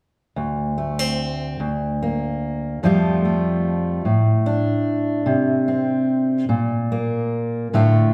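A fingerpicked steel-string acoustic guitar with fresh strings and audible finger squeak sits up front in a slow, heartbroken and intimate folk excerpt in 6/8, moving from D5 through Bb/D and Fadd9 to Asus4 before the chords fall away at 5.3 seconds, all bathed in the wet reverb of a recital hall.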